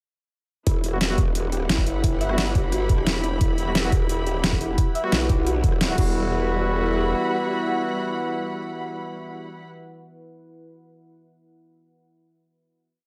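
A straight 4/4 pulse at 175 BPM drives this mechanical, futuristic, dark technical drum and bass piece in E minor, where an overdriven knocking kick and a tight kit of deep snare, bright hats, rim and crash hit up front beside a growling, saturated bass with changing wobble speed, a soft round pluck repeats a 16-step arpeggio with delay in the background, bowed woody strings shift slowly, mellow brass fires sparse echoing stabs, and a moody detuned pad joins at 4.2 s before the drums stop at 6.0 s and strings, brass and pad settle onto a final chord from 6.2 s, ringing on to 9.7 s.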